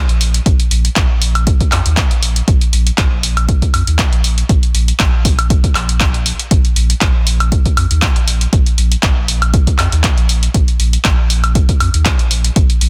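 A dense, heavily limited modern master with little reverb gives this short acid house excerpt a close, upfront sound. At 119 BPM in 4/4 with a light 16th-note swing, the groove feels hypnotic and trippy. A round, sine-like sub bass moving between Bb1 and F2 holds the low end from 0.1 seconds, its fast attack and sustained, mellow tone pumping under sidechain compression. A punchy analog drum machine, re-recorded in a small room and placed up front, supplies handclaps, hi-hat and woodblock throughout. An electronic kick drum with a tape-warm punch enters at 0.5 seconds and sits loudest in the mix, driving the track until it stops at 12.7 seconds.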